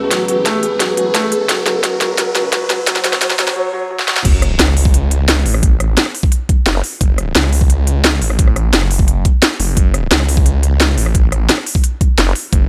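Dark technical drum and bass at 174 BPM in F# minor, this mechanical, futuristic excerpt opens with a build-up where a moody, detuned analog pad with chorus and sidechain pumping sweeps through a filter alongside a soft, felt-muted upright piano playing arpeggios with delay and audible action noise, while a riser and sub drop sit in the background. A brief break at 3.6 seconds gives way to the drop at 4.3 seconds, marked by an impact, where an overdriven, knocking electronic kick and a crisp, tape-tinged kit with a cracking snare, both active since the opening fills, drive hard beneath a snarling, growling sawtooth bass that has been sounding from the start. A nasal, resonant wobble bass with a formant-filter vowel sweep cuts in for brief stabs at 6.7 and 12.2 seconds, all set in light digital ambience.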